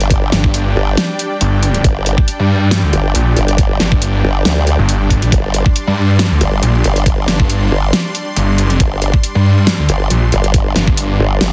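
A dense, heavily limited and nearly dry mix opens this menacing, chaotic excerpt of heavy wobble dubstep, which runs at 138 BPM in a half-time 4/4 feel with a light 16th-note swing over a G5 chord. A knocking, tape-warm electronic kick and a layered kit with a huge snare and bright hi-hats sit up front, while a formant-sweep wobble bass, sawtooth and sine with chorus and overdrive, churns low from the start. From 0.3 seconds a snarling, growling distorted saw bass with a resonant moving notch joins it, and a lush, evolving supersaw pad pumps softly behind everything with sustained chords.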